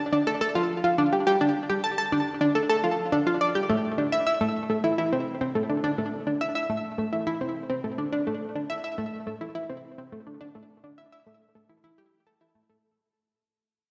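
An analog pluck synth opens the clip alone, sounding from 0.1 s and ranging from A3 to A5 in a luminous, cosmic ambient setting at 105 BPM in a straight 4/4. Its tone blends sawtooth and square waves with a sub octave beneath, and a filtered, fast-attack, short-decay envelope gives each note a round, bright snap. Chorus and delay thicken the synth, and it sits up front even as an echo-heavy chamber reverb with a long 2.4-second tail surrounds it. A cassette-tape character colours the whole mix. From 3.7 s the music moves into a new passage and begins a long fade-out that runs until the clip, cut from a longer piece, ends at 12.8 s.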